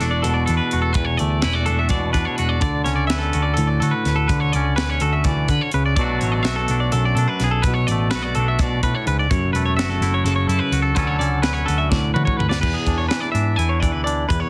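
Two clean, twangy electric guitars open this wistful, intricate math rock and midwest emo passage in a straight 7/8 at 252 BPM (counted in eighths), one picked and compressed as accompaniment while the other plays fingered arpeggios high above, carrying a slapback echo. A dark, round hollow-body short-scale bass sits underneath, and an airy, polished fusion kit with a high-tuned snare and tight kick moves through crash, hi-hat and toms as the harmony shifts from E7sus4 through Dmaj7, Bm7 and F#m7. A drum fill at 11.9 seconds leads into a brief new section on E7 at 12.6 seconds, all under light reverb and a heavily compressed, radio-like sound, cut from a longer piece.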